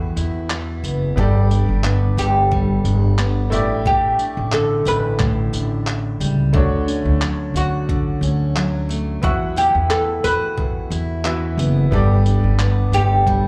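Easy-going and carefree, this short acoustic pop excerpt moves at 89 BPM in 4/4 with a light sixteenth-note swing, sitting in D major. An up-front, plectrum-plucked oud carries the melody with a deep, double-stringed tone and a slapback echo, while a bright, brilliant vintage upright piano, also touched by slapback echo, fills in the accompaniment alongside a full-bodied picked dreadnought steel-string guitar. Underneath, a pizzicato upright bass sits up front with a growly, woody thump. A dusty, sampler-style kit enters at 0.2 seconds with a gritty, compressed character, mixing a thumpy kick with handclaps and tambourine. The chords drift through Esus2, Gadd9, A7sus4 and Dmaj7 before circling back, and the whole performance sounds like a live gig heard through the venue's PA, with club reverb and small-room ambience.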